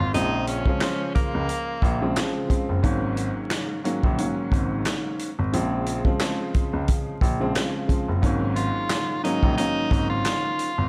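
Vinyl crackle and a small room's reverb frame this tough, reflective boom-bap hip-hop excerpt, which swings over Bbm7 and Ab7sus4 chords. A dark, mellow baby grand piano holds down the bass beneath a woody, slightly detuned upright piano with a cassette-tape tint, while a tight vintage kit of kick, snare, hi-hat and handclaps sits up front and very quiet, distant finger snaps drift in the background. A bright, punchy tenor saxophone states a forceful, jazz-style line with vibrato, dropping out after 2.1 seconds and returning at 8.6 seconds.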